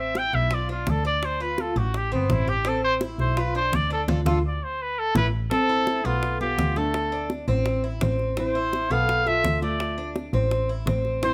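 This short excerpt has a close, detailed sound with light reverb, and it opens in a nostalgic, warm Cuban son and guajira mood in A minor at 168 BPM in a straight 4/4. A clear, vintage-toned trumpet carries the melody up front, singing with light vibrato and scooped notes in a pop style, and it takes a solo over the first 5.5 seconds. Beneath it, a Cuban tres plays picked arpeggios with a metallic shimmer from its double strings, some of them octave-doubled. A bowed double bass sits up front in the low register, focused and singing with vibrato, while round, low-tuned bongos struck with hard hands sound close and dry from 0.2 seconds. The band hits an accent and the drums play a fill toward 5.5 seconds. At that point a dark, full-bodied nylon-string guitar enters with a thumb-plucked second line as the harmony moves through Am, Bm7b5 and Dm.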